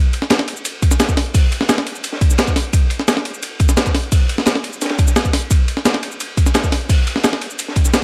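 This drum and bass passage at 173 BPM in a straight 4/4 opens with two breakbeat kits sounding together from 0.1 s. Up front is a compressed, sampler-style kit with a high-tuned snare, hi-hat, ride cymbal and shaker. Beneath it sits a quieter, crunchy acoustic kit recorded in a studio room, dark and saturated with a rolled-off top, its cymbals, hats, snare and room sound thinned by high-pass filtering. A punchy, layered electronic kick arrives at 0.8 s and sits loudest in the mix, carrying a tape-warm edge. Light reverb and small-room ambience frame the gritty, soulful groove, which holds a single lush section as a short cut from a longer piece.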